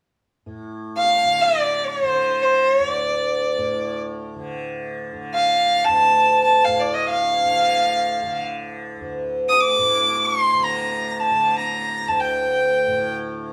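Indian classical music in free time, this solemn, longing excerpt in raga Bhairavi on D, tuned to A4 = 438 Hz, sets a softly plucked, buzzing, shimmering tanpura drone from 0.5 seconds beneath a single bowed violin that enters at 1.0 seconds and carries the up-front melody with a nasal, earthy tone and light vibrato, both played live together in one room and bathed in a wet studio reverb.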